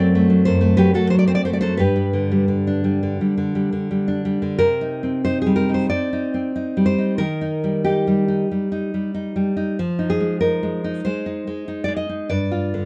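Intimate and wistful, this short romantic excerpt for solo nylon-string guitar unfolds in a rubato 4/4 feel, the fingerpicked, up-front guitar sounding deep and classical with fresh strings and an audible finger squeak, set in light reverb within a dark production as it moves from D7/F# and G into a second section that turns through Cm, Eb and Fm7 before arriving at G7(no3) at 12.3 seconds.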